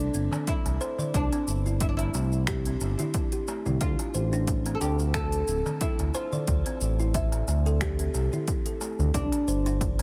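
This short organic downtempo excerpt opens with a deep, woody oud carrying the melody in D minor, alongside a ringing, hollow-toned kalimba playing arpeggios and a smooth, mellow synth bass sitting up front with tube saturation and sidechain pumping. The mood is earthy and meditative, moving at 90 BPM in 4/4 with a light swing on the sixteenths, and the tuning sits slightly low at A4 = 437 Hz. Finger snaps, smooth hi-hats and shaker from an overdriven electronic kit arrive at 0.1 seconds, a crisp metal-shelled darbuka joins at 0.3 seconds, and a punchy, layered electronic kick enters at 0.5 seconds, both drum parts carrying a small room ambience. The oud's plectrum-plucked double strings carry delay, while the kalimba's thumb-plucked notes trail into tape echo. The harmony moves from Cadd9 to Dmadd9 and settles on Csus2 near the end, all set within a studio ambience.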